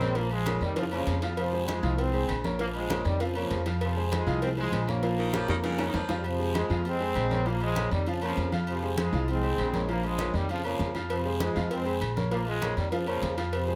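A moderate studio reverb surrounds this passionate, danceable salsa excerpt in F minor at 198 BPM, where a bright trombone section with light vibrato carries the melody up front over a woody, thumpy pizzicato upright bass and an intimate upright piano with audible action noise. Congas, distant ringing agogo bells and timbales, and compressed, low-tuned cowbell and bongos fill the background alongside a raspy guiro, the cowbell and bongos dropping out at 6.2 seconds and returning at 11.1 seconds. A gritty, punchy baritone saxophone adds a brief second line from 5.2 seconds while the harmony alternates between Bbm and Fm.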